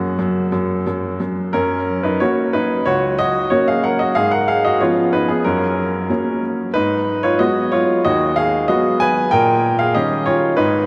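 A vast, echoing cathedral reverb with a long tail and softened highs surrounds this cheerful, elegant classical-period piano sonatina, cut from a longer piece and set in F# major at 93 BPM in 4/4 with a rubato feel. The solo baby grand sits up front with a clear, intimate tone, audible action noise and long sustain, ranging from C#2 to G#5 for the full 10.9 seconds. Its harmony moves from F# through C#7/G# and back to F#, then to G#m7 and D#7/A# near the close.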